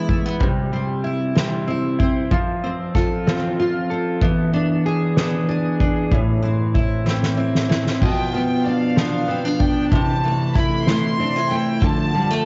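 A double-tracked, full-bodied steel-string acoustic guitar and a clean, compressed electric guitar playing delayed arpeggios open this melancholic, dramatic six-eight pop ballad in A minor at 63 BPM, joined by a soft-mallet drum kit with a boomy kick and fat snare whose fill at 7.1 seconds leads into a pure, floating violin section bowed sul tasto entering at 8.0 seconds, all heard through the dull haze of a home cassette recording in a small room.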